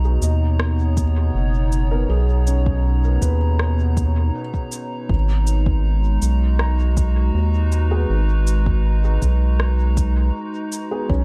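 An echo-heavy, spacious mix opens this deep ambient dub excerpt in G# minor at 80 BPM, where a warbling, nostalgic tape-like pad holds chorused Bmaj7 and G#m7 chords over a round, up-front analog bass, while a felt-muted upright piano with audible action noise plays soft arpeggios through dub echo, an electronic cabasa and rim click and a soft electronic kick (entering at 1.0 s) keep a straight 4/4, and a woody, boxy upright piano adds dark stabs in the background, briefly at 1.9 s and again from 7.9 s.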